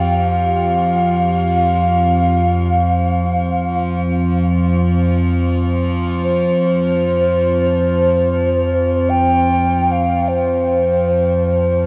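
This is meditative world music in free time, a short cut from a longer piece with a peaceful, calm mood. A mellow alto ocarina carries the melody up front, its clay, airy tone close-miked and expressive, with vibrato and tongued notes trailing into a diffuse ambient delay. Alongside it, an icy glass pad, also up front, holds a low drone that is crystalline and bright, built from layered sine, sawtooth and noise with ring modulation, chorus and its own reverb, swelling in slowly and sustaining with a long release. In the background a glass harmonica adds a pure, ethereal texture, its slow-attack tones shimmering with beating until it drops out at 10.4 seconds. The whole recording sits in a huge, wet reverb, giving a dark, warm production.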